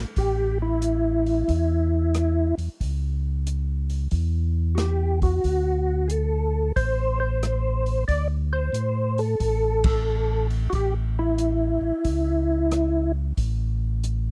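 A dry, close studio sound in a 1970s style frames this short, greasy and soulful soul jazz organ trio clip, which swings in 4/4 and is cut from a longer piece. A mellow, round tonewheel organ carries the bass line throughout, its dark, clean tone marked by key click and a slow rotary speaker. Above it, a second tonewheel organ takes the melody from 0.2 seconds, sounding clear and percussive with third harmonic percussion, chorus vibrato and the same slow rotary speaker. A swinging big-band drum kit sits up front with a punchy kick, a medium-tuned snare, rim clicks, hi-hat and dark ride cymbals, its acoustic, airy polish suggesting a hall. The harmony moves from A to D and back to A, and the band hits an accent together at 9.7 seconds.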